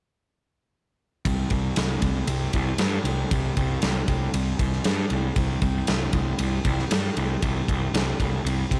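A straight 4/4 classic rock groove drives this swaggering excerpt, as a huge arena drum kit with a punchy kick, medium-tuned snare and bright ride cymbal plays up front alongside a fuzzy, overdriven picked electric bass from 1.3 to 8.8 seconds, all in a dry sound.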